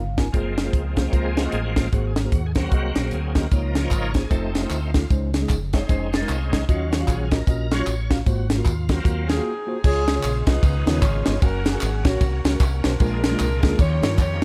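A shouting tonewheel organ, full of key click and turning through a slow rotary speaker with chorus vibrato, takes the solo at the start of this uptempo gospel excerpt, which moves at 152 BPM in 4/4 with a swung eighth-note feel in Db major. Underneath, a mellow tine electric piano comps through its built-in speakers while a deep, round and punchy fingered electric bass holds the low end. A tight, up-front funk drum kit drives the groove with a high-tuned snare and bright cymbals, and a tube shaker and group handclaps join in the background. A twangy guitar with an envelope filter and lush chorus slips in briefly at 5.7 seconds, and a clear, close-miked saxophone section takes up the melody from 9.3 seconds, just before a short break, over chords such as Gbmaj9#11, Ab13 and Db13. The dry, dark production gives the whole piece a reverent yet jubilant character.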